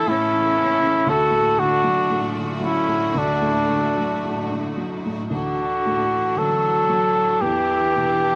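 A mellow trumpet carries the melody up front from the first moment, its classical-style line touched by tape echo, while a warm, smooth viola sings a second line in the background and a felt-muted upright piano adds dark, intimate accompaniment. Behind them a bright, biting string section holds distant sustained chords with light vibrato, all set in a small room with light reverb. This wistful, tender Celtic slow air in D major drifts freely in rubato at around 53-60 BPM, shifting to a new section at 5.3 seconds in this brief cut from a longer piece.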